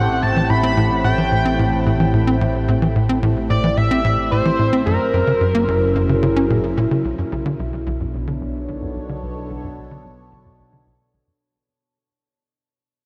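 Drenched in a huge, wet ambient reverb, this cosmic, expansive excerpt of sequencer-driven space music at 110 BPM sets a tight, punchy sawtooth sequencer bass riff under a shimmering, retro pulse-width lead melody, a sweeping, resonant, wave-folded pad of sustained chords, and an evolving, detuned analog drone, until the lead stops at 6.5 s and the music moves from A dorian to B minor at 7.0 s, fading out as a filter sweeps the analog synth bass.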